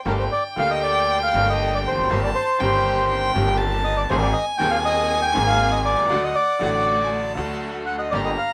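Tense and sultry, this short tango excerpt in G minor moves at 119 BPM in 4/4, though its feel is rubato and elastic. A reedy, dark bandoneon carries the melody up front, while a solo bowed violin, warm with vibrato, portamento and a soft attack, adds a second line from the very start. A bright, brilliant upright piano supplies the accompaniment, and an acoustic upright bass plucks a woody, growly low end from its steel strings. Behind them, a lush studio string section adds expressive bowed stabs with a smooth top, sitting in the background. The harmony passes from Gmadd9 through Eb6/G and Abadd9 to D, all within a moderate studio ambience.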